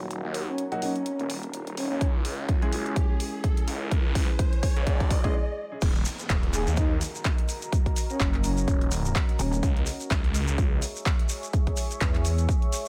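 Bass house at 126 BPM in Eb phrygian, aggressive and bouncy with a swung 16th feel, opening on a build-up where dark grand piano stabs pass through a filter sweep over a deep, moody pad, a swirling phased saw bass, a breathy flute-like lead, a background riser and downlifter, and an overdriven kit of handclaps, hi-hat and crash, joined at 2.0 s by a punchy up-front kick, before a brief stop gives way to the drop at 5.8 s with a grainy close shekere and, from 8.2 s, a heavy pulsing wobble bass, all moving between Ebm and Dbm in a dry room on a section cut from a longer track.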